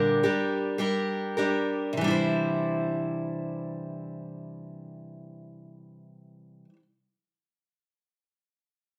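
A bright, up-front picked steel-string acoustic guitar carries this short folk fragment, playing accompaniment in C mixolydian at a slow 49 BPM in straight 4/4. The opening two seconds slow down over a Gm/Bb chord before settling onto Cadd9 at 2.0 seconds, giving the passage a hopeful, warm mood. A moderate, large studio reverb surrounds the guitar, which sounds as if it was captured live in one room.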